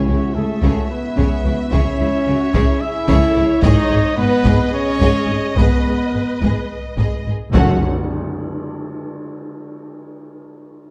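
A dark, warm mix with moderate recital-hall reverb frames this epic, heroic orchestral film-score fragment in 7/8 at 218 BPM (eighths), set in F# dorian and moving from C#m to G#m before landing on F#5 at 7.5 s. Mellow French horns hold sustained chords while a clear solo trumpet punches out stabs. Lush violins with vibrato carry a distant melody over a more focused second line, and shadowy violas with portamento sit in the background above a very quiet cello section and soft-attack double basses. Hard-mallet calf-head timpani open the passage and return at 7.5 s for a full-band accent, heavy-stick taiko drive from 0.6 s, and a bright tam-tam, close and dry, enters with that accent.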